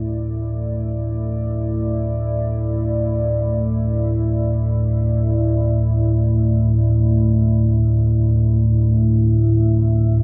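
Ambient in free time, this ominous, cavernous fragment from a longer piece rests on a Dsus2 chord, tuned to A4 = 442 Hz. A rumbling, up-front drone in the low register carries the weight, while a full-bodied, mellow pad with chorus fades in across the whole 10.2 seconds, holding sustained chords above it. A moderate plate reverb and an echo-heavy mix give the sound a dark, cave-like depth.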